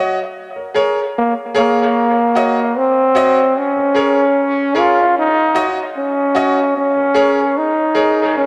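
A dripping spring reverb with a long tail and heavy echo gives this short reggae passage, cut from a longer piece, a hypnotic, spacious atmosphere. A bright, natural-sounding grand piano sits up front, playing stabs in a mid-high register that are thrown into dub echo. At 1.2 seconds a clear, vintage-toned solo trombone enters with a pop-style melody, also up front and slightly louder than the piano, its lines echoing into the reverb as well. Underneath, the harmony rocks between Bbm7 and Ebm7 in a straight, unhurried 4/4 feel. The piano drops out at 8.2 seconds, leaving the trombone's final phrase ringing briefly into the echo.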